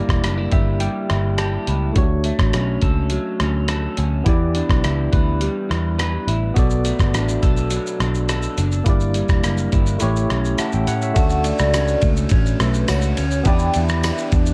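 A barky, lightly overdriven tine electric piano with tremolo and a cassette-tape haze opens this dreamy, nostalgic indie and bedroom pop excerpt with a fill at 0.2 seconds, while a slightly broken-up picked electric guitar with chorus and warbly pitch drift plays alongside it from the very start. Up front sit a round, foam-muted electric bass and a gritty, compressed sampler-style soul kit with a thumpy kick, hi-hat, ride, rim click and shaker in a big-room sound. At 11.2 seconds a mellow, airy soft-mallet vibraphone with chorus and tape echo enters over the shift to a new section, and a jingly, band-limited tambourine follows in the background at 11.7 seconds, all within a dark production with light reverb.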